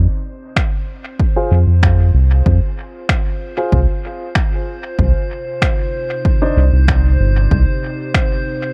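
A round, deep analog bass opens this spacious ambient dub excerpt at 95 BPM, as a warbling, nostalgic tape-like pad fades in beneath it, holding chorused chords over an F minor to C minor change at 5.0 seconds. From 0.6 seconds, a punchy, overdriven electronic kick sits up front alongside muffled, pitched-down finger snaps that carry dub echo, and from 0.9 seconds a glassy texture of drifting overtones hovers high above. A dark, woody upright piano adds filtered, echoing stabs with a filter sweep. The bass drops out at 7.7 seconds and the drums play on to 8.3 seconds, leaving the pad and texture to ring in a dark, warm production.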